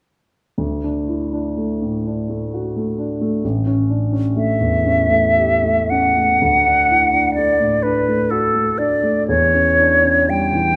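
Lyrical and tender, this romantic classical duo for flute and grand piano unfolds in D major at a slow, rubato 41 beats per minute in a lilting 6/8, its uneven beats lending a breathing, unhurried feel. A dark, mellow grand piano sits up front and opens alone at 0.6 seconds with accompaniment over D and A7 chords, before a pure, metallic silver concert flute enters at 4.4 seconds with a vibrato-rich, soft-attacked melody that rises above the quieter piano. The pair shifts into a new section at 6.4 seconds, moving through D to a C#dim/E, all bathed in the wet, lingering reverb of a recital hall, in a fragment cut from a longer piece.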